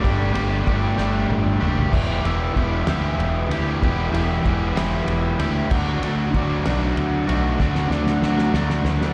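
Heard through a venue's PA in a small room with recital-hall reverb, this carefree, jangly indie rock fragment in 6/8 pairs a bright, double-tracked, crunchy overdriven guitar riff with slapback echo and a round, fuzzy fingered electric bass, both up front, over a cloth-damped, thuddy drum kit with a fat snare and dark cymbals that plays fills at 1.0 and 7.6 seconds as the chords move from Gsus2 through Em7 to D.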